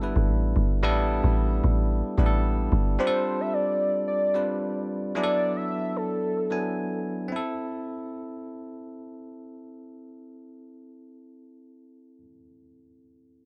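This excerpt of late-night, hypnotic amapiano at 111 BPM in A minor opens on a drop: a deep, round log drum bass sounds up front until 3.0 s, under a bell-like tine electric piano and a velvety sawtooth synth lead that carries the melody with chorus and tape echo. The lead stops at 7.0 s, leaving the bright, clean electric piano to carry its accompaniment until 13.5 s, as the suspended ninth chords give way to A minor. Little reverb keeps the sound dry and close.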